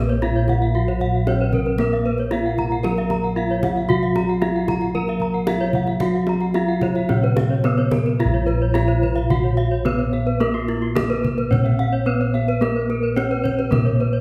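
Balinese gamelan with a ceremonial, brilliant mood and an uneven pulse, in which a bright, up-front bronze metallophone struck with a horn mallet carries the melody with shimmering paired-tuning beats; two more horn-mallet metallophones, one of them airy, ring out arpeggios above; round, beating bossed gongs hold the bass; a tight kendang drives the percussion; and a mellow metallophone played with padded disc mallets sits in the background as accompaniment until it stops at 8.2 seconds, with the whole ensemble heard from further back in a reverberant recital hall.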